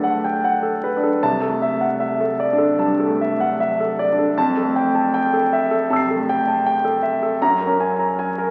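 An intimate concert grand piano, up front and polished with deep bass and audible action noise, plays alone through this serene, dreamy impressionist fragment of about 8.5 seconds. The rubato phrasing drifts over lush extended chords, moving from Gmaj9 to C69 and Fmaj9 before settling on F#add9 at 7.4 seconds. A wet concert hall reverb surrounds the instrument, and the sound of a very old 78 rpm record adds vinyl crackle.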